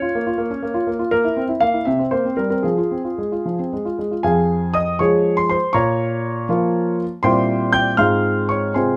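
Cast in 6/8 at 80 beats per minute on the dotted quarter, this brief cut from a longer classical-period piano sonatina moves with a flexible rubato that gives it a graceful, elegant bearing. A solo concert grand carries everything, spanning F2 to G6, with a warm, intimate tone, deep bass and a natural, up-front presence in which the audible action noise of the instrument can be heard. Set in F minor and tuned to A4 = 439 Hz, the harmony moves from B-flat minor through C7 over B-flat and a bare C fifth before settling on F minor at 2.6 seconds. The opening phrase then returns at 4.2 seconds, again touching B-flat minor and C7 over B-flat before coming to rest on F minor over A-flat at 8.0 seconds. Light reverb surrounds the piano, keeping the sound close and unadorned.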